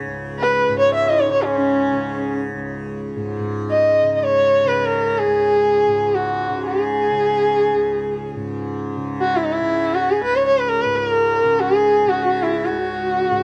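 This is a Hindustani classical performance in raga Bhimpalasi on C#, unfolding in free time with a meditative, solemn mood, cut from a longer piece. A softly plucked tanpura drone sits low in the mix, its buzzing, shimmering strings sounding throughout. Up front, a single bowed sarangi carries the melody with a rich, focused tone and smooth top, gliding between notes with portamento and light vibrato while its sympathetic strings ring. The sarangi ranges from C#4 up to E5+21c. A mellow duduk adds a quiet second line in the background, with vibrato and scooped notes in a folk style, heard from 0.5 to 2.5 seconds and again from 11.1 seconds. The sound is that of a dry, close 1970s-style studio recording with light reverb.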